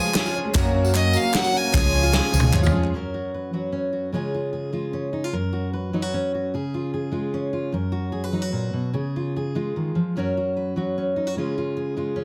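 The recording sounds dense and heavily limited, with light reverb and studio ambience around this short, nostalgic and hopeful cut of indie folk in F# major, moving in a straight 3/4 at 149 BPM. In the opening moments a clear, earthy fiddle sings the melody up front with light vibrato and a slapback echo. Around it sit a bright, shimmering twelve-string acoustic guitar in the background, a woody upright piano playing arpeggios with long sustain and its own slapback echo, a soft, felt-muted upright piano with audible action noise, and a reedy, breathing pedal harmonium holding very quiet chords. A round, dark picked electric bass and a loose, gritty drum kit with a punchy kick and rolled-off top drive the rhythm, joined by crisp group handclaps and a jingly, distant tambourine, and the kit plays a fill from 2.1 s. At 2.9 s a warm, fingerpicked steel-string dreadnought guitar enters up front as the rest of the band falls away. 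Its finger squeaks are audible as the harmony sways between C# and F# until the cut ends.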